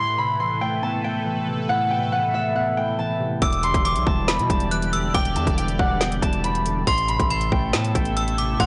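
A blown-out, overdriven recording in a digital ambience, its top end dulled, frames this brooding, melancholic half-time trap and hip hop fragment cut from a longer piece. An up-front concert harp rings out the melody through tape echo over a clean, mellow tine electric piano and a sweeping, resonant chorused pad, moving from Amadd9 to Em7 and back. At 3.4 s a metallic, inharmonic FM bell enters with a second line through chorus and tape echo, joined by a heavy, distorted 808-style bass and an electronic trap kit with a hard-clipped kick, woody snare and metallic hats.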